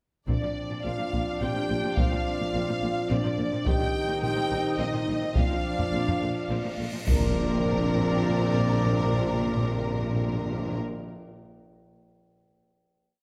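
A triumphant, adventurous orchestral film cue in three opens with the full ensemble at once: two lush violin sections carry the tune in unison and at the octave, while violas and cellos drive ostinatos beneath them. Distant double basses and a mellow tuba double the bass line, and dark horns, clear trombones and soft-edged trumpets add sustained brass chords, set in a reverberant scoring-stage ambience. Heavy single strokes on close taiko drums punch through alongside very quiet, dry timpani, until a huge, bright cymbal swell at 6.6 seconds builds into a low impact at 7.1 seconds, where the timpani return; the taiko stops at 8.2 seconds as the orchestra holds its final chord.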